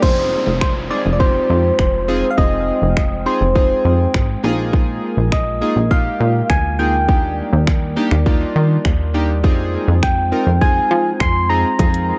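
A straight 4/4 house groove of punchy kick, hi-hat, finger snaps and crash cymbal drives this confident dance-pop excerpt, as a plucky, funky analog bass and glossy, pumping retro synth keys with dub echo sit beneath a round, gentle FM lead carrying chorus, vibrato and echo, while a glass harmonica holds ethereal sustained chords in the background and a downlifter sounds until 4.7 seconds in an echo-heavy mix.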